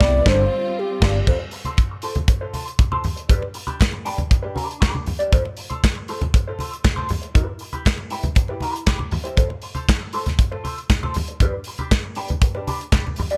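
Danceable and sultry, this disco cut opens with a brief band accent where a breathy, mellow alto flute solo, lush bowed strings and a punchy, overdriven fingered bass sound together for barely a second, after which the slightly broken-up electric guitar, colored by wah and phaser, carries on over an up-front acoustic drum kit with tight kick, handclaps, hi-hat and crash while low-tuned, thick-skinned congas enter at 1.3 seconds, all in a dry, close room as the chords move mainly between F and G/D.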